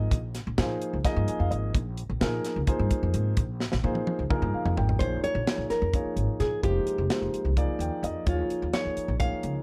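This excerpt of electric jazz fusion opens with a dark, mellow grand piano and a woody, growly pizzicato upright bass, joined almost at once by a tight, dry funk drum kit of hi-hat, kick drum, snare drum and toms. The pulse runs at 258 BPM in eighths, in a straight 7/8 that feels intense and slick over a Bb7sus2 chord. The piano adds short fills, and a drum fill leads into the change at 5.0 seconds. There the music settles into Bb minor, and a fingerpicked nylon-string guitar takes the melody with a full-bodied, deep classical tone over Bbm7, Fm11 and Eb9sus4. Piano, bass and drums sit up front, and the piano's long sustain lends the accompaniment a smooth, vintage sheen, while little reverb and a warm production keep the whole sound close and intimate.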